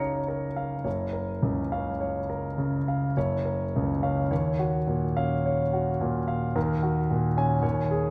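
Rubato and unhurried in 3/4 at about 53 BPM, this serene, hazy impressionist solo piano fragment in F# major drifts from F#maj7 to D#m9 at 4.3 seconds and settles on F#add9/D# at 6.6 seconds. A single concert grand, clear and intimate, sits up front across a span from deep bass to high treble, its long sustain and action noise audible in a polished, present sound. A wet scoring-stage reverb with a 1.9-second decay surrounds the 8.1-second passage, which is cut from a longer piece.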